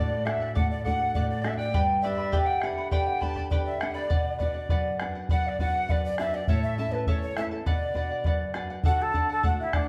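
A breathy, slightly unsteady clay ocarina carries the wistful yet festive melody in B minor, its tongued notes touched with vibrato and chiff and set back at a distance, while a reedy, bright wooden quena traces a second line alongside it. A shimmering double-strung charango and a full-bodied nylon-string guitar fingerpick the accompaniment through D, G, B minor and A, and a round, up-front bombo joins at 0.3 seconds to drive the straight 2/4 pulse at 101 BPM. The band plays live together in one room under a lush large-studio reverb, and this short cut from a longer Andean folk piece moves into a new section at 8.8 seconds.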